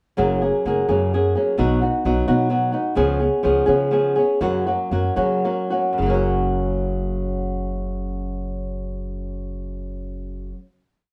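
This short, complete mariachi piece in the Mexican folk tradition has a festive, proud mood, moving in a straight 6/8 at about 71-87 beats per minute, counted in dotted quarters, in F# major. A flamenco guitar sits up front as the accompaniment, blending fingerpicked figures with folk strumming on open chord shapes, its fresh strings warm and its finger squeaks clearly audible. Beneath it, a pizzicato upright bass with gut strings gives a woody, dark, thumpy foundation, playing root and fifth on the main beats. The harmony moves from F#add9 through B and C#7 back to F#, and the tempo slows from 3.0 to 6.0 seconds. A held final chord then rings out until about 9.3 seconds, with both instruments sharing a snug small room whose reverb is fairly wet.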